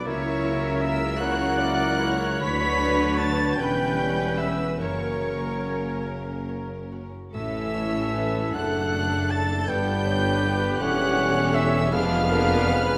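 Elegiac and melancholic, this slow, rubato classical excerpt in 6/8 (about 47-54 BPM) is cut from a longer symphonic romantic movement: a high, vibrato-rich violin section carries the melody while a clear oboe, pure straight-toned flute, background violins and a warm clarinet add second lines, a distant viola section and dark bassoon accompany, a dark, tight horn section holds sustained chords, a mellow trumpet adds stabs, a bright, ringing harp plays very quiet arpeggios, and clear cellos, mellow tuba and double basses form the bass, all set in a scoring-stage reverb as the harmony moves from F#7/C# through Bm/D, F# and G to a closing Fdim7 at 11.9 seconds.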